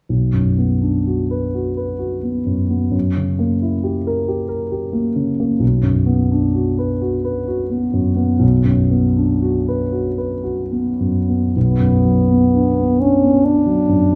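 Solemn and elegiac, this romantic classical fragment for French horn and grand piano moves in a rubato 3/4 at roughly 50-69 BPM in B minor, cut from a longer piece. A dark concert grand with deep bass plays the accompaniment alone from the start, moving from Bm to F#7b9 and back to Bm, until a mellow, close-miked French horn enters with the melody at 11.6 seconds, up front and shaded with light vibrato. Both instruments sit in a large studio space with a wet reverb.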